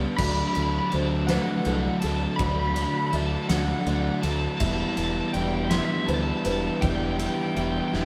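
An up-front, overdriven semi-hollow guitar riff drives this melancholic, cinematic post-rock fragment in 6/8 at 54 BPM, moving from D to Em7 at 4.6 seconds, with a growling, overdriven fingered bass underneath and a punchy, fat-snared acoustic rock kit with crash, ride and rolled-off top joining at 0.2 seconds. A slightly broken-up, compressed lead guitar carries a high melody over bright, twangy twelve-string arpeggios and a muted, boxy felt piano with audible action noise sitting in the background. A very quiet, organ-like pad with slow attack and chorus holds sustained chords, and the whole band plays live in one room with a wet reverb, tuned to A4 = 437 Hz.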